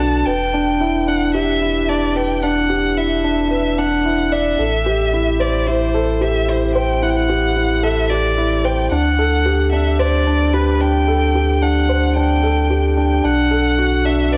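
In a straight 4/4 feel, this melancholic, cinematic piano-and-strings electronica opens with an intimate felt-muted upright piano riff, its thick felt and audible action noise sitting up front, over a deep, round sine sub bass, while a single bowed violin sings a rich, expressive melody with vibrato and portamento through Em7, Am7, D7sus4 and Bm7, all bathed in light studio reverb.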